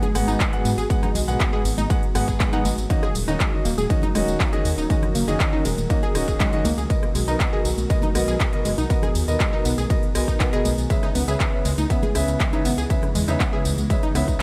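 Bittersweet and expansive, this progressive house excerpt in G# minor moves at 120 BPM over G#m7, D#m7, Bmaj7 and C#m7, with a punchy, overdriven electronic kick up front from 0.4 seconds, a crisp big-room kit of handclaps, hi-hat, ride, rim click and tambourine, bright hard-hand congas in the background, a deep, rumbling detuned saw bass, a boxy concert grand piano playing stabs with dub echo, a lush unison pluck spinning arpeggios through a filter sweep, and an evolving, morphing wavetable pad holding sustained chords beneath, the pad, bass, pluck and piano all pumping with the sidechain in a dark production.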